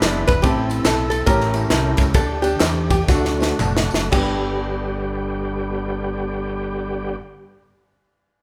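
A short slice of uptempo gospel in G major opens with the full band at once, a dark, clean hollow-body archtop guitar carrying the melody over a warm grand piano with audible action noise, a gritty overdriven tonewheel organ on slow rotary speaker holding thick chords, and a round fingered electric bass, all with a swung 4/4 feel between 109 and 145 BPM. A crisp, polished fusion kit with a high-tuned snare and tight kick sits up front alongside background handclaps and tambourine, and the band slows down from 0.4 seconds as the chords move from Am through A7b9 and Dsus4 to D, capped by a drum fill. The band lands on G at 4.1 seconds, and drums and percussion drop out shortly after, around 4.3 seconds, leaving guitar, piano, organ and bass to ring on in a reverent, jubilant studio room.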